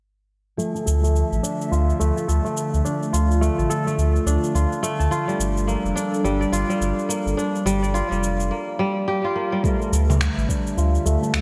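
Organic downtempo at 106 BPM in 4/4 with a swung sixteenth feel, this mystical, hypnotic fragment moves from Dm to Gm7 and back, tuned slightly flat at A4 = 437 Hz. Up front, a crisp, ringing fingerpicked kora plays arpeggios through a low-pass filter sweep and digital delay. Around it sit an airy, breathy detuned pad with chorus and sidechain pumping, a round sine sub bass that also pumps and enters at 0.9 s, a tape-warm electronic shaker and finger snaps in gated reverb, and a dark bronze singing bowl with slow beating in the background. A deep electronic kick arrives at 9.6 s, with a very quiet tap of small frame drum at 10.1 s, and the mix sits in a lush hall reverb with a bright 1980s-style digital sheen.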